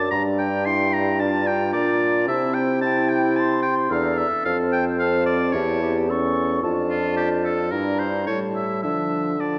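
Heard in a dark concert hall with a long reverberant tail, this excerpt from a quick classical-period movement for wind quintet in D minor at 110 BPM feels urgent and dramatic. A pure-toned silver concert flute carries the melody with vibrato and a crisp attack, sounding distant and expressive, while a clear, present oboe plays an up-front second line and a soft-attacked French horn and a vintage-toned clarinet in the background supply the accompaniment. Beneath them a warm bassoon plays the bass up front as the harmony moves from Gm through C and F to A7 and settles on Dm.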